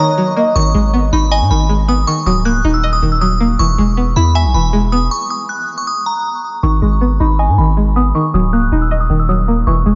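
A half-time hip hop groove at 158 BPM in G# minor sets a menacing, hard-hitting mood in this cut from a longer piece, moving through D#m, G#m and E before a stop at 5.1 seconds. A crystalline FM bell melody with chorus, tremolo and tape echo sits up front beside a twangy, string-like resonator pluck with a noise layer, while a velvety, detuned synth lead glides briefly in the background at the opening and a deep, mellow sine 808 bass enters at 0.6 seconds. After the stop, the pluck's filter sweep carries the final section from 6.6 seconds, and the whole mix is soaked in a dreamy cathedral reverb, with the top end kept soft.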